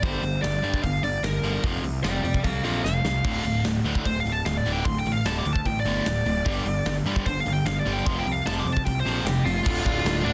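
A dark, smooth overdriven lead guitar takes an up-front solo through this raw, angry punk rock excerpt, riding over a bright, cranked stack guitar riff and a growly, fuzzed picked bass, with a second overdriven guitar slipping into the background at 3.2 s. A big, natural-sounding acoustic kit sits up front with a punchy kick and medium-tuned snare, crashes and hi-hat, and a drum fill leads into that entry. The chords move from Gm to F to Dm and on through G5 and F5, all in a dry, dense, heavily limited modern mix.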